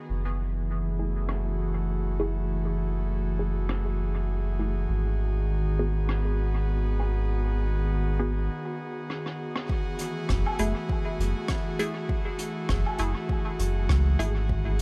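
A small room ambience wraps this hazy, spacious ambient dub piece, cut from a longer work, moving at 100 BPM in 4/4 with a light 16th-note swing in F# dorian. An airy, breathy pad with chorus holds sustained chords from the first moment, its detuned, bright layers drifting over a round analog bass that sits deep and up front. From 1.0 seconds, muted, filtered dub chord stabs with a phaser and dub echo pluck quietly through the harmony, which moves from F#m9 to G#m7 and back. A vintage brush drum kit with a rolled-off top plays hi-hat, rim click and woodblock, its low-passed sounds trailing dub echo. After a short break and drum fill, an overdriven electronic kick drum enters at 9.7 seconds, adding a deep, layered pulse beneath the returning F#m9.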